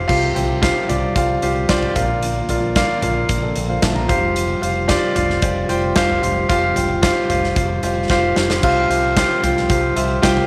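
Piano-driven pop at 112 BPM in 4/4 with an anthemic, hopeful mood, this excerpt is led by an up-front concert grand piano whose intimate tone carries audible action noise, deep bass and long sustain over chords moving from Csus4 to Bb to Fsus2. A punchy fingered electric bass through an envelope filter and a huge arena drum kit with bright cymbals and a hall sound drive things along, with a drum fill at 8.1 seconds before the return to Csus4. In the background, a soft, flute-like tonewheel organ holds chords through a fast rotary speaker, all set in a moderate echo chamber reverb.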